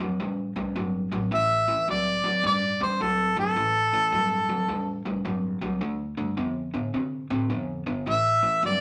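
Brooding and soulful, this short clip of electric blues shuffle moves at 107 BPM in 4/4 with a 65% swing on the eighths, set in A minor. A picked, hollow-bodied semi-hollow electric guitar plays the riff, while an upright bass on gut strings supplies a woody, thumpy pizzicato foundation beneath it. At 1.3 seconds a harmonica enters as the jazz-style solo voice, warm and present with light vibrato and scooped notes, and it sits as the loudest part of the mix. Both the guitar and the harmonica carry overdrive and sit up front. The harmony rests on A minor before moving to D minor at 5.8 seconds and landing on an A power chord at 8.1 seconds, all within a moderate studio reverb.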